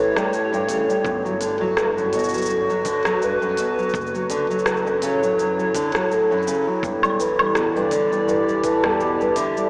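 Folktronica with a playful, warm mood, moving at an easy 83 BPM in 4/4 with a gentle swing on the sixteenths. Up front, a dark, full-bodied nylon-string guitar plays thumb-plucked arpeggios with audible finger squeak, treated with tape echo. Above it, a vibraphone struck with soft mallets carries a mellow, ringing second line through its slow motor vibrato and tape echo, while a warbling, detuned tape-like pad holds sustained chords with chorus and a slow attack. In the background sit a woody pizzicato upright bass with tube saturation and a muffled, thumpy, pitched-down electronic kick that plays from 1.0 to 8.8 seconds. An overdriven organic electronic drum kit enters at 0.2 seconds with crisp hats, cabasa, rim click and woodblock. The chords move from A7 through Gmaj7 and Dmaj7/F# to Em7, and the whole mix is soaked in a huge, dreamy reverb with a small-speaker character, in an excerpt cut from a longer piece.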